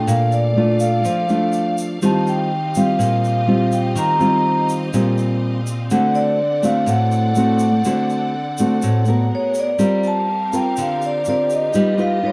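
Dark, intimate studio sound with a moderate large-room reverb gives this short cut from a longer bossa nova piece a smooth, enveloping glow. The thumb-plucked nylon-string guitar sits up front with a warm, classical tone, carrying the accompaniment from the lower register into the middle through the whole passage. Above it, a vibraphone played with medium mallets and the motor off sings the melody in a metallic, ringing voice. Lower in the mix, a clear, lush string section holds bowed chords with vibrato and a smooth, focused top, while a grainy, bright tube shaker ticks close and dry in the background. The harmony drifts from Bbmaj7 and Eb69 through D7 and Abm9 before a new section opens at 9.8 seconds on Gm11, closing on a Gaug7.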